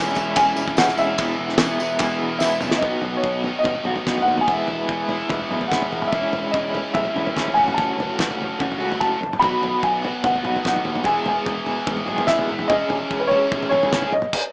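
A dark, slightly detuned upright piano carries the melody from the start, its woody action noise audible, over a biting overdriven guitar riff bathed in lush chorus and tape echo, a second riff from a slightly broken-up, lo-fi guitar with tremolo through a small old amp, and a picked electric bass sitting in the background. At 0.2 seconds a cloth-damped, thuddy drum kit with a fat snare and dark cymbals comes in up front, joined by a jingly tambourine until 2.7 seconds, and a drum fill at 2.4 seconds leads into the next section. This wistful, jangly indie rock excerpt has the rough feel of a home demo heard through a small speaker, touched with light studio reverb.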